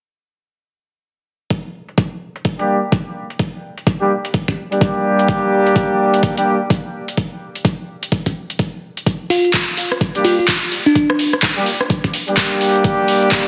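Bass house with a swaggering, bouncy swing, where an up-front overdriven electronic kick knocks alongside a garage kit of handclaps, rim clicks and metallic hi-hats from 1.5 seconds, a clear, close-miked jazz horn section stabs through lo-fi sampler grit, sidechain pumping and tape echo, and a sparkling, bell-like FM electric piano with chorus adds a mellow melody from 9.3 seconds, all inside a plate-reverb space and a dense, heavily limited mix.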